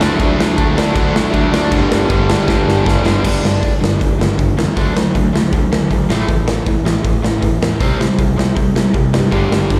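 Punk rock at 158 BPM in G major, energetic and rowdy, captured as a live gig through the venue's PA with small-room ambience and recital-hall reverb. A big, up-front acoustic kit with bright cymbals and a punchy kick drives riffs from a biting overdriven guitar and an overdriven semi-hollow guitar, both with slapback echo, while a growly fuzz bass rumbles underneath and a double-tracked, compressed fuzz guitar plays until 3.7 seconds and returns at 9.3 seconds. A drum fill at 2.5 seconds leads into a new section at 3.2 seconds, where the chords shift to G5, D, A5 and C5.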